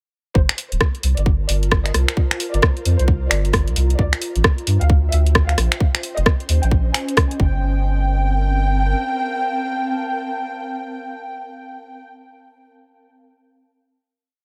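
A moody, soulful two-step UK garage piece in G minor at 132 BPM with swung 16ths opens on a dark, intimate violin section playing a repeating riff through tape echo, alongside a round dub sub bass with sidechain pumping, a tight four-on-the-floor electronic kick and a garage kit of finger snaps, skipping hats and rim clicks, while an ethereal, detuned pad with chorus and reverb enters at 1.2 seconds and carries the slowly shifting Gm11, Cm7, Dm11 and Bbm11 chords into a final Gmadd11 chord from 7.6 seconds, held with the violins to the close.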